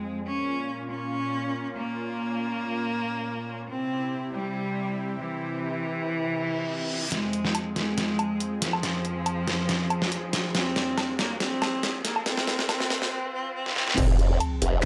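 A bowed cello with a rich, focused vibrato opens this menacing, chaotic heavy wobble dubstep excerpt in F harmonic minor at 140 BPM, its melody trailed by dub echo over a lush, detuned supersaw pad that pumps under sidechain behind a low-pass filter. At 7.1 seconds a dubstep kit with a deep snare, recorded in a large room, joins with crash, handclaps, hi-hat and woodblock for a half-time build-up full of drum fills, while a reverse cymbal, riser, swell and sub drop hover in the background. At 14.0 seconds the impact lands on Fmadd9 as a distorted, tape-warm kick and a saturated formant-sweep wobble bass, thickened by chorus and overdrive, strike together.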